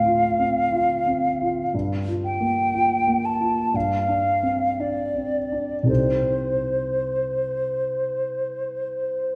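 A hollow, airy concert flute sings the melody with vibrato and a crisp attack, close and up front, over a warm grand piano whose deep bass and short sustain frame the accompaniment from the first moment. This impressionist classical duo moves in a slow, rubato 4/4, drifting through Dm7, Gm7, G7sus4 and Cm6 chords with a mysterious, hazy mood. A wet recital hall reverb surrounds the pair in this brief passage cut from a longer piece, ending at 9.4 seconds.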